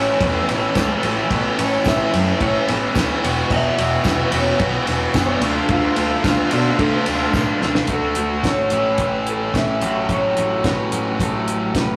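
Jangly and carefree, this short indie rock excerpt moves at a steady, straight-feeling pace in four. A dark, slightly broken-up electric guitar through a small old amp carries the melody with analog delay. A bell-like tine electric piano adds a very quiet second line until 7.3 seconds. Beneath them, a biting overdriven guitar and a crunchy overdriven guitar both drive the riff, while a growling, overdriven picked electric bass grinds underneath. The cloth-damped drum kit sits up front with a fat snare, tight kick and dark cymbals, and a faint jingly tambourine shimmers until 7.5 seconds. A drum fill at 7.3 seconds leads into a new passage on D, A and F#m/A, all captured as a rough rehearsal-room recording with tube saturation and a stony room reverb.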